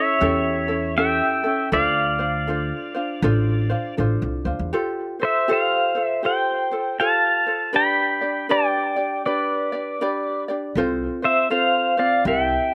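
Languid and sunny, this Hawaiian piece drifts along at 80 BPM in 4/4 with a lazy swing on the eighth notes, and it is cut from a longer work. An electric pedal steel guitar carries the melody up front, its clean, compressed tone shaped by fingerpicks, slide and volume swells, with a slapback echo trailing each phrase. A mellow, fingerpicked acoustic ukulele supplies light accompaniment beneath it, also touched by slapback echo. A pizzicato upright bass with steel strings adds a woody, warm low end, playing through the opening in D minor, dropping out when the music turns to F major at 4.7 seconds, and returning at 10.8 seconds. The harmony moves from A7 and Dm7 through Fadd9 and G to F/C, and the dry outdoor recording carries little reverb and keeps each instrument close and clear.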